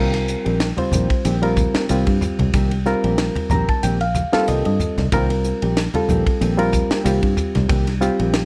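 A reedy, slightly out-of-tune electric piano up front, a dark, compressed electric guitar with lush chorus playing stabs in the background, and a round, punchy fingered bass open this driving, slick electric jazz fusion excerpt on a Cm7 chord in C dorian at 93 BPM in 4/4 with a 55% sixteenth-note swing, joined at once by a crisp fusion drum kit with a high-tuned snare and punchy kick and, from 0.8 seconds, low-tuned, hard-handed congas, while the electric piano takes a fill from 3.2 seconds, all set in light reverb.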